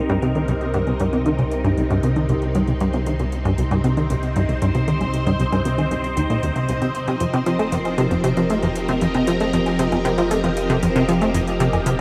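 Mysterious and cosmic, this short cut from a longer piece of sequencer-driven ambient space music floats in a huge, wet reverb that lingers for seconds. Up front, a punchy, funky analog bass riff with a detuned sawtooth and square-wave bite and a fast, decaying filter pluck runs almost the whole length, dressed in lush chorus and tape echo. Beside it, a bright, swirling vintage string machine holds sustained chords through ensemble chorus and phaser, moving from Cm7 to F7sus4 at 6.9 seconds. Beneath them a deep, round sine sub bass with tube saturation sustains, while a tempo-synced, pulsing triangle texture sits in the background with chorus and its own reverb, fading in gradually. Electronic hi-hat and woodblock, with metallic, overdriven hats, tape echo and a small-room character, also fade in across the passage.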